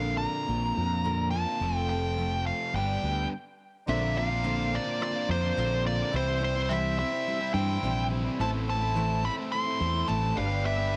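Light studio reverb gives this short rock excerpt a polished, close sound, and its mood is nostalgic and hopeful at a straight 106 BPM in 4/4. Up front, a nasal lead guitar with a parked wah and overdrive carries the melody, with a round, direct fretless bass just beneath it, its tone touched by subtle chorus. A picked dreadnought acoustic guitar picks out warm accompaniment, while a double-tracked, compressed electric guitar plays a dark, overdriven riff. After a brief stop from 3.3 to 3.9 seconds, a second section begins, and a reedy accordion enters in the background with sustained chords, along with a very quiet, mellow baby grand piano. The harmony moves from Bbadd9 through F and G, then to C, Am and G, lending the passage a lifting, wistful pull.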